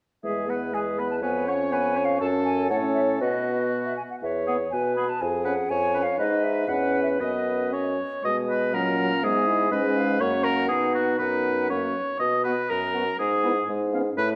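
A flute, oboe, French horn and bassoon open together at 0.2 s in this cheerful, lively excerpt from a quick classical-period movement for wind quintet, and a bright clarinet joins at 0.7 s. The music moves in two with a flexible, rubato feel. The airy flute carries the melody high above with vibrato and a crisp attack, heard close and hollow. The oboe sings a second line with light vibrato and a roomy tone, while the clear horn and the present clarinet fill in the accompaniment. The punchy, vintage-sounding bassoon holds the bass up front. Midway the harmony shifts toward a new key centre, and a second section begins at 8.2 s, all set in a reverberant recital hall with a dark production.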